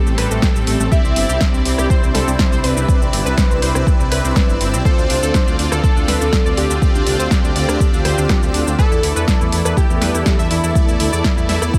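A straight 4/4 pulse at 122 BPM drives this expansive, bittersweet progressive house passage, with an overdriven, deep electronic kick pushed up front from 0.4 s and a layered deep house kit supplying hi-hat, rim click, shaker and a punchy snare, both drum parts carrying a small-room character. Underneath, a dark detuned saw bass rumbles and beats between G1 and E2, pumping against the sidechain. The harmony moves from Am7 to Cadd9 at 0.9 s, then to Dm7 and E7sus4, carried by a lush, woody string section with vibrato sitting in the background and a smooth, soft-attack supersaw playing stabs through phaser, chorus and tape echo. A round, evolving analog pluck spins arpeggios behind them with chorus and echo. Above them, a catchy plucky unison lead carries the melody between E4 and E5, roughened by vintage 12-bit sampler grit and trailed by delay, while a very quiet granular texture twinkles high on E6 with an octave-up shimmer. 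The mix is dry, with little reverb, and the passage is cut from a longer piece.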